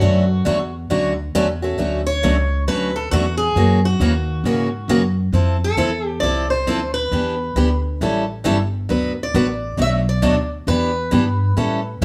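A swung 4/4 pulse at 135 BPM drives this playful, lively fragment of acoustic string swing in D major, cut from a longer piece. The picked swing-style acoustic guitar carries the melody in a bright, boxy voice, with fresh strings and an audible finger squeak. Beneath it, the picked archtop guitar supplies the accompaniment, its tone bright and up front, while the pizzicato upright bass sits low with a woody, thumpy, dark sound. All three parts play from 0.0 to 12.0 seconds, and the music moves into a new section at 1.8 seconds. The harmony opens on Dmaj7 and passes through F#13, Fmaj7 and an Em7–A7–D6 turn before arriving at Bm7 and Em7, all within a moderate studio reverb.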